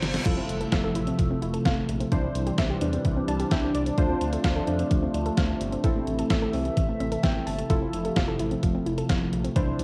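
A straight 4/4 pulse at 129 BPM drives this wistful, upbeat synth-pop passage in F major, cut from a longer piece. It opens on a drum fill from a detuned 8-bit drum machine, thumpy in the kick with a medium-tuned snare, hi-hat and crash, sitting up front with a tape-warmed, sampler-style sound. A very quiet reverse cymbal and impact mark the start, the impact ringing out until 2.1 seconds. Beneath it, a round, deep analog bass blends sine and sawtooth with a touch of ring modulation, while a swirling, nasal pad with slow attack and long release holds sustained chords through phaser and chorus. From 0.3 seconds, detuned analog keys with filter sweeps fill in the accompaniment, adding brief fills around 3.0 and 6.8 seconds, and a soft, dark pluck runs arpeggios in the background through chorus and analog delay. The chords move from Fmaj7 through Cadd9, Dm7 and Am before returning to Fmaj7, all in a light reverb with the character of a home cassette recording.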